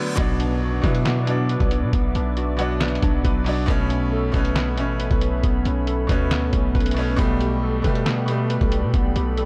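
A dark, warm digital ambience frames this brooding, hard-hitting trap excerpt in B minor, moving at 137 BPM with a half-time feel. It opens with a brief break at 0.0 seconds, where a reverse cymbal and downlifter sit electronic in the background while a bright, brilliant concert grand piano and warbly lo-fi synth keys begin together. The piano carries the accompaniment up front with natural tone and deep bass, and the nostalgic, vintage-sounding synth keys spin arpeggios through chorus and digital delay, with a filter sweep colouring their square and sawtooth tones. From 0.2 seconds a compressed, pitched-down sampler-style drum kit takes the foreground with a thumpy kick, medium-tuned snare, handclaps and hi-hat, joined by a punchy, heavy 808-style bass with a sine core and a noise layer. A hollow, flute-like pad with chorus holds soft sustained chords high above, as the harmony moves from Bm to Aadd9 at 3.7 seconds and Gadd9/B at 7.2 seconds.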